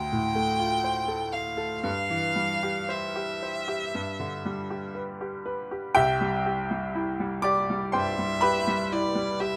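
This is a romantic classical duo for violin and baby grand piano, tender and lyrical, moving at roughly 57-64 BPM in 4/4 with a flexible rubato feel in C major. A single bowed violin carries the melody in a narrow upper range, its tone bright and focused with vibrato, sitting up front. The baby grand piano accompanies across a much broader span, from deep bass to high treble, with a brilliant, natural sound that also sits close and sits slightly louder than the violin. The harmony moves from Dm7 through C/G to G, then settles on C at 6.0 seconds as the music turns to a new section. Close, detailed microphones and light reverb give the fragment, cut from a longer piece, an intimate clarity through its 9.6 seconds.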